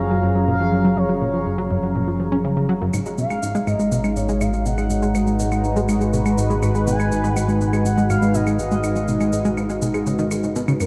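A tight, driving sequenced synth riff of detuned sawtooth and pulse waves, with a plucky filter, chorus and tape echo, anchors this hypnotic, mysterious stretch of ambient space music at 122 BPM in G# dorian, shifting from F#maj7 to G#m7 at 2.9 s. A sweeping resonant pad of evolving, detuned saws holds sustained chords over a warbling, vintage analog drone bass with tube saturation. A smooth, expressive lead with vibrato and a moving notch sings the melody through subtle chorus and tape echo, while electronic cabasa and claves, re-recorded in a large room, join at 2.9 s, all within a dark, warm production bathed in huge ambient reverb.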